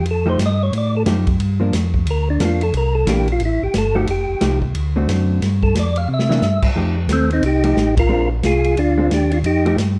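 Bluesy and swinging, this soul jazz organ trio cuts in at a brisk 179 BPM in F mixolydian, with a percussive tonewheel organ carrying the melody in a solo through 6.8 seconds, its lightly overdriven tone shimmering with chorus vibrato and a fast rotary speaker. Beneath it, a second, mellow tonewheel organ holds down a round, clean bass line with audible key click through a slow rotary speaker, while a picked, compressed hollow-body jazz guitar comps and a vintage drum kit with a punchy kick and medium-tuned snare sounds natural in a small room. A drum fill at 6.1 seconds leads into the next section, where the band hits an accent at 7.9 seconds, all within a dark production with light reverb, in a passage cut from a longer piece.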